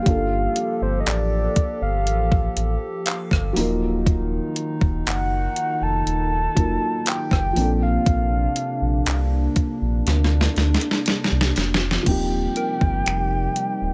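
Dreamy, romantic contemporary R&B at a slow 60 BPM, where a round, octave-layered synth lead with chorus and digital delay carries the melody over a felt-muted upright piano, a hollow, flute-like pad, deep sub bass and a crisp, overdriven 8-bit drum machine with thumpy kick, snaps and handclaps, while a pure FM bell glints in the background until 4.0 seconds and returns at 12.6 seconds, all moving through Gm9, Ebmadd9 and Bbmaj9 to Eb69 after a drum fill from 10.1 seconds in this dry, up-front excerpt.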